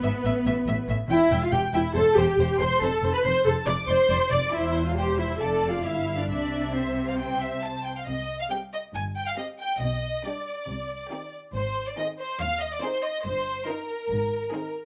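A quick, spirited and graceful classical-period movement for string orchestra at 139 BPM with a rubato feel, where a smooth, close first violin section carries the melody over a second violin line, an up-front, focused viola section with a smooth top provides accompaniment, and expressive cello and double bass sections, the cellos sliding with portamento, anchor the bass, all under light reverb as the music turns from C major to C minor at 8.1 seconds.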